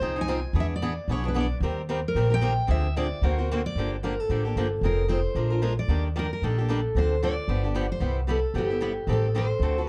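A picked steel-string acoustic guitar carries the melody from the outset, its fresh strings and plate reverb lending a warm dreadnought tone, while a bright, boxy swing-style guitar and an up-front, woody upright bass played pizzicato on gut strings drive this fast, bittersweet jazz manouche. The chords slide through restless, chromatic harmony before the music settles into a minor-key passage at 3.8 seconds, with the thumpy bass sitting slightly forward of the two guitars. The dark, lightly reverberant production gives this virtuosic fragment of a longer piece an intimate, string-band feel.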